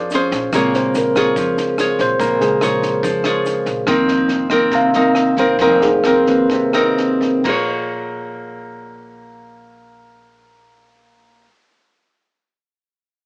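A bright, clean tine electric piano sits up front and takes a solo from 0.5 seconds, its tone colored by its built-in speakers. This wistful, smooth bossa nova excerpt in Bb minor moves in straight 4/4 at 122 to 143 BPM, easing into a slowdown from 3.9 seconds. Underneath, a warm, fingerpicked nylon-string guitar in a classical style also sits up front, while a woody pizzicato upright bass with steel strings plays low in the mix. A compact cocktail drum kit with a high-tuned snare, punchy kick, rim click and crash cymbal has a dark, rolled-off top and a small-room sound. A grainy tube shaker sits in the background early on. The harmony moves from Bbm9 to F7sus4 and settles on Bbm7 at 7.4 seconds, where guitar and bass carry on after the piano and drums stop, all wrapped in light reverb and a small speaker sound.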